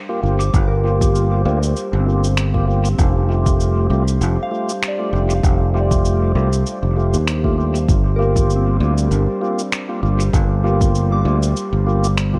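A growly, up-front fingered electric bass anchors this meditative, hazy ambient dub piece, cut from a longer work and moving at 98 BPM in 4/4 with a gentle 16th-note swing in G minor. Alongside it, a deep, layered electronic kick drum carries a tape-warm character, as if re-recorded in a small room, while muffled, compressed electronic cabasa and finger snaps enter at 0.4 seconds and trail off through dub echo. A fat, lightly overdriven tonewheel organ plays stabs colored by chorus vibrato, a slow rotary speaker and its own dub echo. In the background, a warbling, nostalgic tape-like pad holds dark, lo-fi sustained chords with a slow attack and built-in reverb, and a pure, mellow FM synth bell spins soft arpeggios through chorus and tape echo. The harmony drifts from Gm7 to Fadd9 at 3.0 seconds and returns to Gm7 at 7.9 seconds, all set in a light reverb.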